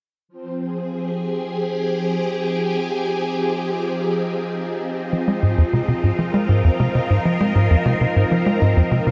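Expansive and hypnotic, this short cut from a longer piece of ambient, sequencer-driven space music moves in a straight 4/4 over a single Fm7 chord. A phased string machine opens at 0.3 seconds with sustained chords that sound swirling, vintage and warbling, its soft attack and long release coloured by ensemble chorus and phaser, bright and up front. At 2.5 seconds a bubbling stepped-filter texture slips in from the background, a resonant sawtooth with random filter steps, slow attack, chorus and its own built-in reverb. At 5.1 seconds a tight sequencer bass takes up a driving riff, punchy and mellow with a fast-attack filter pluck and decaying notes, treated with analog chorus and tape echo and sitting well forward. The synth texture fades in gradually, and the whole is bathed in a huge, wet ambient reverb with a long 7.2-second tail.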